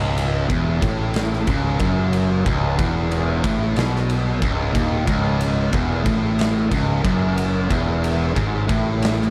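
A studio-reverbed, sludgy stoner and doom metal excerpt at 92 BPM in C# minor, where a bright, double-tracked fuzz guitar riff sits up front over a growly, punchy overdriven picked bass and an oversized low-tuned acoustic drum kit with a boomy kick, medium-tuned snare and dark ride cymbal in a big pumping room, all resting on a heavy C#m chord that holds throughout the 9.3 seconds.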